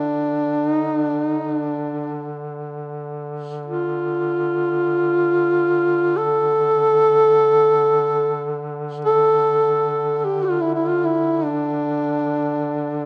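In free time, this mournful Caucasian folk lament in D minor, tuned to A4 = 441 Hz, unfolds over 13.1 seconds taken from a longer piece, full of longing. A mellow, present duduk carries the melody up front between D4 and A4 with vibrato and scooped notes, while a quieter, warm, close-miked duduk holds a steady D3 drone with the same vibrato and scooped notes. Both sound throughout in a moderate recital hall reverb.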